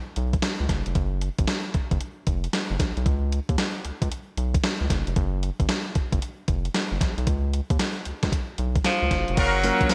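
Swung sixteenths at 114 BPM drive this bouncy, upbeat new jack swing cut in F# major, built on a gated, overdriven 80s drum machine with a thumpy kick, gritty gated snare, hi-hat, tambourine and crash, and a round, deep analog bass up front, before a punchy, forceful tenor saxophone enters at 8.9 seconds, lush background strings and tight horn stabs arrive at 9.4 seconds, and a bell-like tine electric piano joins at 9.6 seconds, all within a bright 1980s-style digital R&B sound.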